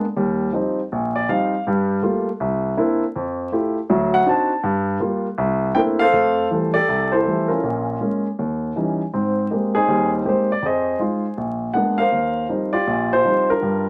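Solo jazz piano in F major swings at 160 BPM with a sophisticated air, as a warm, up-front grand piano ranging from Bb1 to A5 moves through rich extended chords like Fmaj9, D7b9 and Eb7b9 in a moderate club ambience touched with vinyl crackle, the opening phrase giving way at 6.1 seconds to a second passage that drifts toward Abmaj9 and settles on Eb69 in this short cut from a longer piece.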